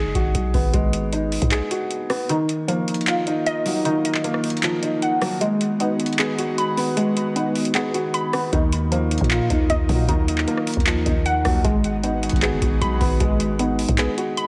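Dark and eerie, this half-time trap excerpt opens on a soft, boxy felt-muted upright piano with audible action noise, set up front beside a dry, booming analog drum machine of deep kick, metallic hats, handclaps and rim clicks, and a growling, buzzy 808-style bass. After a brief break at 1.5 seconds, a crystalline wavetable pluck spins detuned arpeggios through chorus, phaser and tape echo, and a breathy pad with chorus and tremolo settles in the background. The kick and the bass both stay out until 8.5 seconds, and light reverb surrounds the mix.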